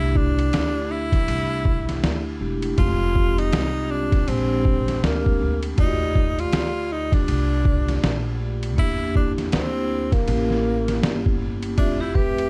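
A relaxed, swung groove in four sets the pace as a gritty, compressed, pitched-down sampler-style kit enters at 0.2 seconds, its thumpy kick, medium-tuned snare, hi-hat and ride sitting up front with a tape-warm character. This cool, relaxed slice of jazz-hop drifts through rich extended chords, moving from C6 through Bb13 and Ebmaj9#11 to a closing Fmaj7. A woody, dark pizzicato upright bass on gut strings anchors the low end. A soft-mallet vibraphone fills the middle with mellow, ringing accompaniment and a slow motor vibrato. Over it all, a breathy, close-miked tenor saxophone carries the jazz-style melody, clear and up front with vibrato and a plate reverb sheen. At 11.8 seconds a bright hard-mallet vibraphone slips in behind as a second line, also bathed in plate reverb, inside a dark, warm, light-reverb production.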